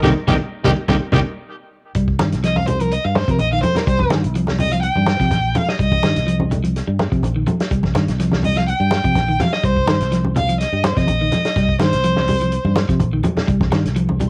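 A bowed violin carries this hypnotic, defiant afrobeat excerpt, its warm, expressive line sung with vibrato and portamento from 2.5 s to 12.7 s, sitting up front yet with a distant quality and a cassette-tape coloring. It opens on a brief band accent over Cm7, where a raspy, growling trumpet with light vibrato and a tape-and-analog-delay sheen punches out a short melody on G4, joined by a hollow-body guitar's clean stabs in the background and an edgy tenor saxophone with analog delay adding a second line. After that opening burst, the harmony settles onto C5 at 2.0 s and the violin solo takes over. Underneath, at a steady 125 BPM in straight 4/4, a clean picked electric guitar cycles arpeggios, a fingered electric bass keeps a dark, round low end, and a dry soul drum kit with a tight kick, medium-tuned snare and hi-hat runs through cassette tape with a rolled-off top. Low-tuned congas, played close with soft hands, ring throughout, and the whole performance has the small-room feel of a home recording on cassette.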